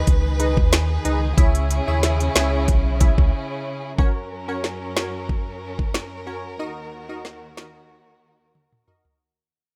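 A crisp, detuned wavetable chord stab and a clear, bowed chamber string section with vibrato open together over a deep, sine-like sub bass with octave. Both the stab and the strings pump against the sidechain, and an up-front electronic drum kit of knocking kick, woody snare, smooth hats, snaps and toms joins almost at once to carry this sultry, tough 92 BPM dancehall groove in a dry, rough demo mix. The bass drops out at 3.3 s for a short break, and the piece fades from 4.0 s toward a closing drum fill at 8.6 s.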